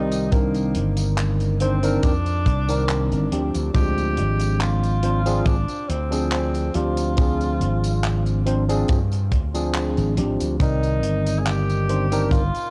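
Bright, up-front slap bass anchors this nostalgic, woozy vaporwave fragment alongside a punchy acoustic kick drum with a rolled-off top, a tight, mid-forward funk kit of hi-hat, handclaps and tambourine in the small room, a barky tine electric piano through a combo amp with analog chorus and delay, and a distant, roomy tenor saxophone carrying the vibrato-laden melody through vintage 12-bit sampler grit and tape echo, under a dark cassette-tape production.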